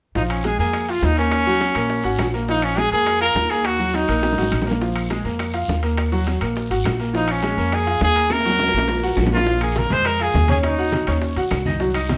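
A clear, punchy trumpet with scooped notes leads this driving, danceable salsa excerpt in Bb minor at 206 BPM, playing up front in two solo phrases, the second starting at 7.2 seconds, over a bright concert grand piano with long sustain and a woody, thumpy pizzicato upright bass on gut strings. Round bongos, ringing metal-shell timbales, a raspy guiro and very quiet, distant claves sit in the background, with a drum fill arriving at 8.3 seconds. At 9.5 seconds low-tuned, thick-skinned congas join as the band, heard playing live together in a large studio, moves between Bbm7 and Ebm7.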